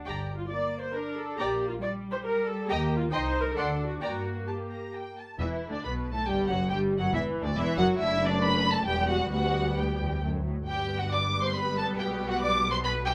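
Muted cellos open the sound at 0.0 s, and a moment later the full string orchestra joins: muted violins carrying the melody up front, a second violin section on a supporting line, muted violas in accompaniment, and muted double basses sharing the bass with the cellos. This quick, classical-period movement in triple time has a lively, cheerful mood. It moves from a minor-key opening to a brighter major-key restatement of the same theme at 5.4 s. Every section plays con sordino with a veiled, dark colour. The violins and cellos sing with vibrato. The violas stand forward with light vibrato and a soft attack, and the double basses add a smooth top beneath. A moderate studio reverb surrounds the ensemble, and the excerpt runs to 13.1 s as part of a longer piece.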